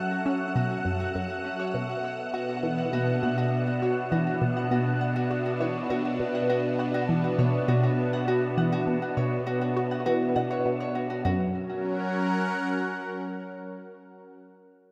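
A thick, lush, detuned unison pad sits up front with chorus and phaser, holding sustained chords in this hypnotic, cosmic ambient excerpt, while a juicy, squelchy ring-modulated blip pluck with phaser and tape echo plays a riff from 0.3 s, a bright, fingerpicked Celtic harp fades in with ringing, echoed arpeggios over the first 11.2 s, and an airy, breathy wind-like texture hovers in the background, as the harmony moves from F# minor to B minor before turning to F# major at 11.2 s, under a long plate reverb.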